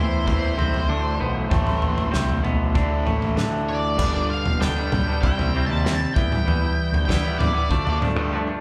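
Opening together, a dark octave-fuzz lead guitar carries the melody over a bright overdriven guitar riff, a clean, compressed twangy guitar riff and a growly fuzz fingered bass set back in the mix, with a loose acoustic drum kit joining at 0.3 s, its tight kick and medium-tuned snare up front, in this restless, cool indie rock excerpt at 97 BPM in A minor, the band playing live in one room with moderate studio reverb as the chords move from Am to G, C, Em and Dm.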